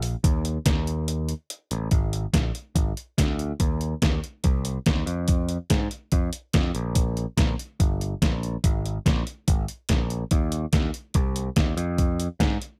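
This indie rock excerpt moves at a straight 143 BPM in 4/4, with a mood that feels both wistful and upbeat. A detuned 8-bit digital drum machine drives it with hi-hat, a thumpy kick and a fat snare, its overdriven, sampler-style sound re-recorded in a small room and placed up front. A picked electric bass, bright, growly and punchy with a direct, amped tone, sits equally forward and moves between G1 and Ab2. A brief break falls between 1.1 and 1.9 seconds, closing a short opening passage before the main section takes over from 1.9 seconds. The overall sound is dry and close, with little reverb, and the clip is cut from a longer piece.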